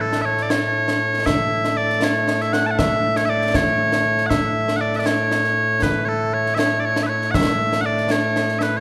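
Loud, bright bagpipes carry a piercing, continuous solo melody up front in this stirring, proud fragment of Scottish pipe music in A major, moving in a straight 6/8 at 79 BPM over concert snare and bass drum with bright cymbals, all heard through the moderate reverb of a church or concert hall across its 8.8 seconds.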